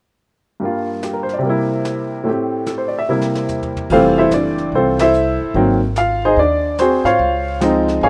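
Relaxed jazz piano trio swinging at 146 BPM in F major, in which a clear, intimate upright piano with audible action noise carries the melody up front over a small-room brushed drum kit with a rolled-off top sitting low in the mix, whose fill at 3.1 s leads to a woody pizzicato upright bass entering at 3.9 s and a band accent at 4.9 s as the harmony moves from Gm7 and C7 to Fmaj7, Ab7 and Dbmaj7, all in a rough home demo mix with light reverb in this short excerpt of a longer piece.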